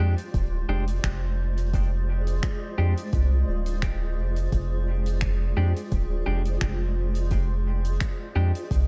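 Heard in a small room whose sound tops out at 7.9 kHz, this short cut from a longer ambient dub piece feels spacious and deep, moving at 86 BPM in 4/4 with a light 16th-note swing in F dorian over a single Fm69 chord. A round, up-front sub bass and a tape-warm electronic kick anchor the low end, while a blurred, evolving granular pad holds sustained chords in its own reverb and a dark, compressed clean electric guitar plays stabs trailed by dub echo. A soft-mallet kit adds natural-sounding finger snaps and hi-hat from 0.2 seconds, and the guitar stops at 8.5 seconds as the other parts carry on to the end.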